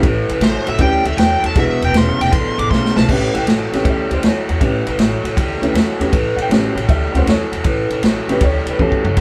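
A band playing live in one room, with moderate studio reverb, gives this short cut from a longer electric blues shuffle a laid-back, swaggering feel. A smooth, dark, overdriven lead guitar sings up front from 0.4 to 3.1 seconds over a bright, lo-fi garage guitar riff with overdrive, a woody pizzicato upright bass, a slightly detuned upright piano with short sustain, and a vintage drum kit with a punchy kick and a rolled-off top. The drums add fills, one closing the clip at 8.8 seconds, as the chords move from A9 to E9 and back to A9.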